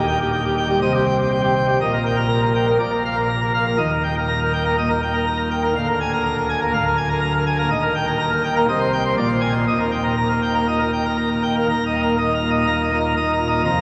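A pipe organ on full plenum carries this majestic, jubilant classical toccata alone, its mixtures giving a brilliant, baroque-voiced sound with an audible chiff at the start of each pipe's speech. The organ sits up front and spans a great range, from a deep D1 to Bb5 at the top. The music moves at 122 BPM in a straight 4/4 in Eb major. The harmony circles around the home chord through C minor, Bb and a Bb7 over D before settling on a bare Eb5 sonority at 11.7 seconds, where a new section begins. A cathedral reverb with a 5.2-second decay surrounds the organ in a vast, lingering wash, while the highest frequencies are trimmed away. This is a short section lifted from a longer piece, ending at 13.8 seconds.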